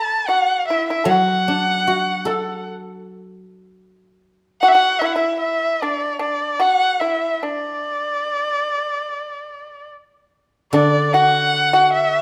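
A clear, expressive erhu carries the melody with vibrato and portamento over a dry, percussive pipa second line, while a ringing, silvery guzheng adds accompaniment from 1.1 to 3.8 seconds and returns at 10.7 seconds, in this graceful, pastoral Chinese traditional chamber piece at a rubato 74 BPM in D gong mode, set in a moderate recital hall reverb.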